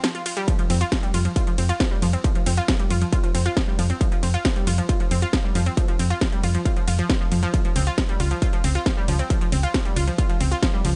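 A distorted, layered electronic kick sits up front, arriving at 0.5 seconds after a brief break and driving this soaring, bittersweet slice of uplifting trance in a straight four-four feel. A punchy, round FM bass enters at 0.7 seconds, its dark, fast-decaying notes pumping against the kick through sidechain compression. Over the top, a detuned sawtooth pluck plays arpeggios from the very start, its bright filter snap thickened by chorus, pumping with the sidechain and trailed by dub echo. A produced techno kit supplies a cracking snare, metallic hi-hats and ride cymbal underneath. The harmony rests on Fsus2 before shifting to Db at 7.5 seconds, and the dry sound with a softened top end keeps this cut from a longer piece focused and direct.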